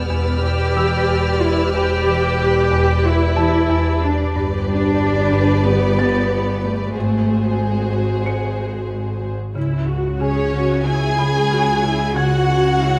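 Cinematic suspense film score with a tense, ominous mood, where a rich, bowed violin section carries an expressive melody over a lush second violin line, a viola section sliding with portamento, a smooth, even cello section and a focused double bass section. A buzzing, woody marimba riff on medium hard mallets starts at 0.1 s and sits dry, while a felt-muted upright piano adds a soft, mellow texture in the background and a high violin section with light vibrato adds a smooth texture until 4.0 s. The strings sit in a reverberant scoring stage, and the harmony settles onto a minor chord at 9.6 s.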